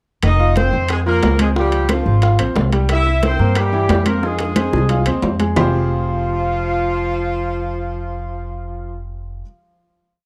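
This short, complete salsa piece in F minor races at 180 BPM with a driving, passionate feel. Up front, a clear horn section states a motif-based melody of call phrases in octave doubling, colored by light vibrato and a slapback echo that gives it a roomy, distant edge. Beneath it, a growly, thumpy pizzicato upright bass plays a tumbao that anticipates the chords, while a brilliant baby grand piano, with its action noise audible, adds a short-sustain montuno in octaves. Congas with slaps and open strokes, bongos in steady eighths with hand bell, and woody claves keeping a two-bar time line sit in the background, joined by ringing metal-shelled timbales with shell pattern and bell. A drum fill from 4.2 s leads to the percussion's exit at 5.6 s, where the band lands on a final F minor add-nine chord; the horns drop out at 9.0 s, and the bass and piano carry on until 9.4 s. The sound is that of a dry, close 1970s-style studio with small room ambience.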